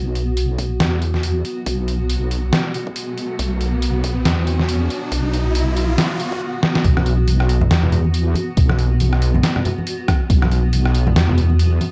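A half-time 4/4 groove at 139 BPM with a 58% swing on the sixteenths drives this brooding, cavernous slice of deep dubstep, cut from a longer piece and sitting on a B5 chord. A heavy, saturated wobble bass with detuned sawtooth and sine layers sits up front from the start, treated with chorus, while a granular cloud pad holds blurred, evolving chords with a moving notch and its own built-in reverb. A gritty, pitched-down sampler-style kit of hi-hat, rim click and medium-tuned snare carries a tape-warm, compressed character, joined at 0.6 seconds by a layered electronic kick with a high-pass filter and studio reverb. An electronic riser builds from 1.9 to 6.4 seconds, a drum fill lands at 6.6 seconds, and the drop arrives at 6.8 seconds, after which bright, soft-handed congas enter from the background at 7.0 seconds. The production is dark, with light reverb and a digital ambience.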